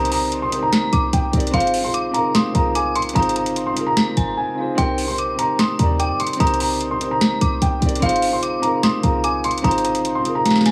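Trap-inflected hip hop at 148 BPM in a half-time feel, this menacing, hard-hitting excerpt is cut from a longer piece. A dark, mellow concert grand piano carries the melody high in its range, softened by a low-pass filter and trailed by digital delay, while an eerie, inharmonic FM synth bell adds a second line above it, shimmering with chorus, tremolo and delay and ringing out on a long release. Underneath, a dark baby grand piano with a smooth, vintage tone sits up front as accompaniment, moving between Cm7 and Ab6 chords. A short, punchy 808-style bass with a sine body and a noise layer hits with a fast attack and decays tightly, joined from 0.1 s by a booming analog drum machine with a tonal snare, metallic hi-hats and a tape-warm character. A very quiet downlifter opens the track, a brief break arrives at 4.4 s, and a drum fill comes in at 10.5 s, all set in a light small-room ambience.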